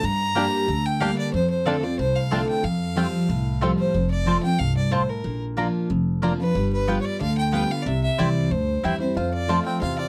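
A straight, driving 4/4 pulse at 184 BPM propels this virtuosic bluegrass excerpt in F major, anchored by a thumpy pizzicato upright bass and a full-bodied, picked dreadnought guitar up front. A clear, focused bowed fiddle with light vibrato carries the melody over woody, double-strung mandolin stabs, while a bright, twangy fingerpicked banjo with slapback echo joins the tune from 0.4 to 3.7 seconds and returns at 9.2 seconds. The sound is a dry, close 1970s-style studio recording with light reverb.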